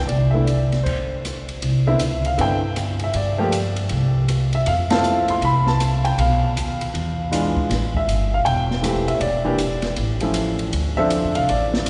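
Drenched in a long cathedral-style reverb with a dark, rolled-off top, this excerpt from a longer jazz piano trio piece swings at 158 BPM in C major with a warm, swinging mood. An intimate concert grand carries the melody up front with deep bass and audible action noise, over a woody pizzicato upright bass and a softer, boomy drum kit whose dark cymbals, ride, hi-hat, rim click and medium-tuned snare sit further back. The trio halts in a brief stop from 0.9 to 1.6 seconds, then moves through Cmaj9, Fmaj7, E7b9 and Am7 harmonies, with a band accent at 4.9 seconds, before landing on Dm7.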